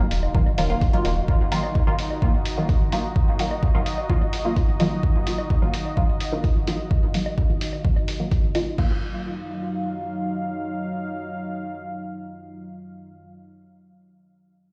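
A cavernous, nocturnal dub techno passage in Eb minor at 128 BPM sounds as if played on a big sound system in a bare room, bathed in large studio reverb, opening on an Ebmadd9 chord. A dark, detuned analog pad with chorus holds slow-attack chords while a muted, mellow chord stab with phaser and dub echo carries a filter sweep until 8.8 seconds, both breathing with sidechain pumping. A round sine sub bass sounds only briefly near the start, a punchy, up-front electronic kick and a muffled, pitched-down sampler-style kit of crash and hi-hat run until 8.9 seconds, and a very quiet, tape-toned woodblock ticks underneath.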